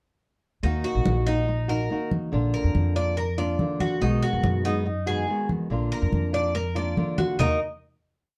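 The Cuban tres brings bright, metallic double strings, some doubled at the octave, picking an arpeggiated guajeo up front in the mix. This is a short, complete Latin piece in the Cuban son and guajira style, sultry in mood, moving at 142 BPM in a straight 4/4 in E-flat harmonic minor. An acoustic upright bass plays a woody, pizzicato syncopated figure, while a fingerpicked flamenco guitar strums with muted slaps, and congas with thick, medium-tuned skins mix slaps and open strokes across high and low drums. All four parts play together from 0.6 seconds through a single verse that cycles through Ebm, Bb and B6 before settling on a final Ebm chord at 7.4 seconds. The dark, warm production sits in a moderate studio ambience with a short room tail.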